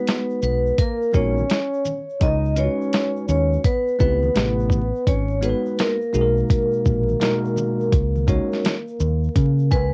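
A smoky, mellow jazz-hop excerpt opens on a ringing hard-mallet vibraphone melody over a quieter, scooped-note trombone second line and bell-like tine electric piano chords, all three softened by cassette tape, before a gritty, compressed sampler-style drum kit with a thumpy kick joins at 0.1 seconds alongside faint vintage egg shaker and congas, while a dark, round fingered dub bass enters at 0.4 seconds beneath the swung groove and vinyl crackle, and the electric piano closes with a fill at 9.4 seconds.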